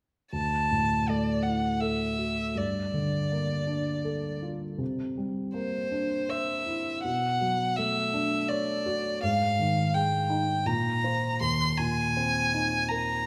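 This impressionist classical duo for violin and grand piano moves at 81 BPM in 3/4, with a rubato feel and a luminous, dreamy mood centred on D mixolydian. A single bowed violin carries the melody from C5 to C6, its warm, smooth tone shaded with vibrato and kept even and up front. Beneath it, a dark baby grand piano supplies the accompaniment from D2 to C#5, its mellow voice ringing with long sustain and sitting just as close. Both instruments play together from 0.3 s to 13.3 s, a short span cut from a longer piece. The harmony drifts through rich colours such as Dadd9, Gm9, C9 and Bm9 before turning to sparer Ab5, Bbsus2 and Eb5 sonorities. A wet scoring-stage reverb with a 1.6-second decay surrounds the pair, giving the sound a spacious, soft glow.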